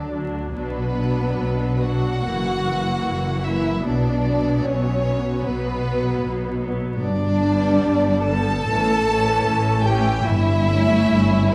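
Serene and warm, this fragment of a slow romantic movement for string orchestra breathes with rubato as a rich, close and expressive violin section sings the melody over a focused second violin line, smooth, distant violas, an expressive, close double bass section and warm cellos with portamento in the background, all bowed with vibrato and set in a wet concert hall reverb under a layer of vinyl crackle.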